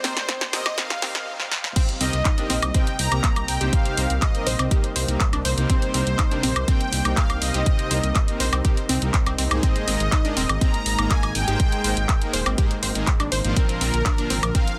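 Driving and expansive, this progressive house excerpt moves at 122 BPM in 4/4 with a straight feel in C minor, cut from a longer piece. A short build-up with a drum fill from the house drum kit opens the clip, then the drop lands at 1.8 seconds, carried by a punchy, up-front electronic kick that enters at 0.3 seconds and a dark, rumbling detuned saw bass that arrives at 2.0 seconds with a saturated, beating low end. The kit adds a punchy snare, bright hats, handclaps, crash cymbal and woodblock, while a soft, airy supersaw sings the melody high above with dub echo and sidechain pumping. A second smooth supersaw plays delayed stabs, a bright unison pluck ripples through arpeggios in the background with delay, and a thick, warbling pad with a vintage chorus sustains chords behind them, all of these synths breathing with sidechain pumping. The harmony moves from Cm7 to Absus2 and then Bb, and the whole sits in light reverb under a dense, heavily limited modern master.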